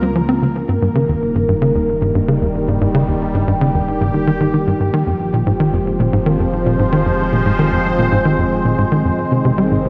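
From the first moment, a sweeping, resonant pad holds sustained chords with a warbling, vintage character and subtle chorus, while a punchy, detuned sequencer bass drives a riff with plucky, dark tones and a touch of chorus and delay, and a deep, round sine sub bass sits low beneath them. This cosmic, luminous excerpt of ambient, sequencer-driven space music moves in a straight 4/4 through Db6, Eb, Fmadd9 and Ab, with the chord change to Fmadd9 arriving at 4.9 seconds. The dreamy mix is soaked in a lush hall reverb, with the pad and sequencer both up front.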